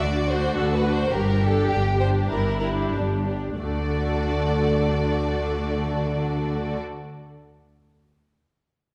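Heroic and soaring, this cinematic fragment of a longer piece in D major moves in a straight 4/4 at 89-110 BPM, easing its pace over the first 3.6 seconds as the harmony travels from D through G5 and back to D. Two violin sections carry the melody and a lush, expressive second line with vibrato, while warm violas fill the accompaniment. Beneath them, a rich cello section sits in the background and a clear, intense double bass section stands up front, all bowed and heard together until 6.8 seconds within a moderate scoring-stage reverb.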